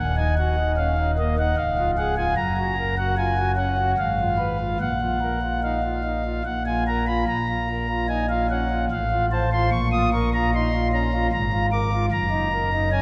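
A lone pipe organ on a smooth principal stop with baroque voicing and a touch of chiff opens this grave, solemn classical chorale fragment, sitting up front and spanning Db1 to Eb6 at a rubato 74 BPM in 3/4, its harmonies moving from Ebm through a suspended Bb chord before settling into Bb minor at 7.3 s, all bathed in a wet church reverb with a 2.8 s decay as the passage is cut from a longer piece at 13.0 s.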